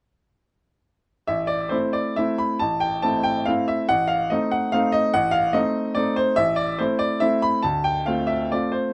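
A bright upright piano plays alone, its woody, vintage tone sitting up front in a close, detailed recording with little reverb. This short classical waltz fragment in A minor moves in a rubato 3/4 at roughly 128-151 BPM, the piano sounding from 1.3 to 8.9 seconds across a range from A1 to B5. Its harmony passes from A minor through a diminished chord and back before reaching D minor seventh, giving the music a nostalgic, bittersweet mood.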